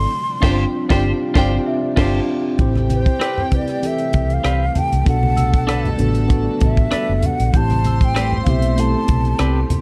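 Lush 1970s-style soul with a smooth, cinematic mood, cut from a longer piece: a breathy, vibrato-rich concert flute carries the melody over a dark violin section's second line, a worn, slightly out-of-tune tine electric piano with light overdrive, and a very quiet sawtooth string machine holding sustained chords. A round, foam-muted electric bass and a tight, dry funk drum kit with a high-tuned snare sit up front, a twangy clean electric guitar plays a riff from 0.4 seconds, and a bell-like celesta adds background texture from 1.7 seconds. After a band accent, the flute takes a solo from 2.6 seconds as low-tuned congas enter, all within a dark production with light reverb and small room ambience.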